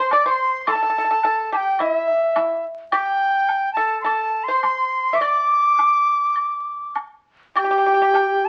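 Pastoral and festive, this short cut from a longer Chinese traditional chamber piece moves freely around 105 BPM in D shang mode, with a buzzing, reedy dizi carrying the melody up front, a percussive fingerpicked pipa adding a bright second line, a close woodblock ticking beneath, and a low, airy xiao with vibrato slipping in at 7.6 seconds, all heard through moderate studio reverb and the crackle and lossy artefacts of a very old 78 rpm record.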